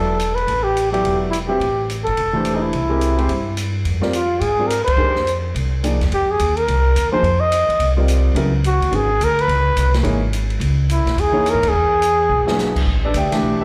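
Heard live through a club's PA with a light small-room reverb, this fragment of fast, swinging modal jazz in A dorian runs at 213 BPM with a spiritual, hypnotic pull, its harmony drifting from A9sus4 through Fm9 and Dbm9 to E7. Up front, a dark trumpet with vibrato, scooped notes and a smooth top carries the melody over an intimate grand piano with audible action noise, both touched by slapback echo, while a woody, thumpy gut-string upright bass plucks the low end. An acoustic drum kit with dark cymbals, a medium-tuned snare and a boomy kick sits back in the mix, with band accents at 4.8 and 11.6 seconds and a drum fill at 12.3 seconds.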